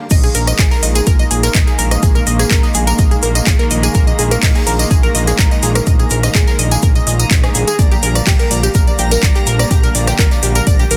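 Veiled, con sordino studio strings hold dark sustained chords that pump against the beat, and a moment later this uplifting, hopeful progressive house drop bursts in with nasal analog pluck arpeggios coloured by chorus, phaser and digital delay, a fat, detuned sawtooth bass, a punchy up-front electronic kick, an overdriven house kit of crash, handclaps, metallic hi-hats, rim click and tambourine, a very quiet brushed jazz kit with high-tuned snare, hi-hat and shaker, and a faint reversed, granular swelling texture, all moving from Bb7sus4 to Gm/Bb at 7.8 seconds inside a dense, heavily limited modern master with small room ambience.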